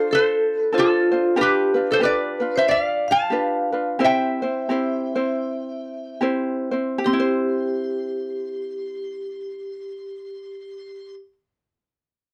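Dreamy and relaxed, this Hawaiian passage in C major swings gently in 4/4 at 71-94 BPM, slowing down from 1.4 to 7.0 seconds over a Dm7, G7 and C progression, as a nasal, up-front lap resonator guitar played with fingerpicks and slide carries the melody, a ringing vibraphone with medium hard mallets and medium motor vibrato adds a second line, and a light, fingerpicked ukulele provides accompaniment, all captured in a dry, close 1970s-style studio sound with light reverb.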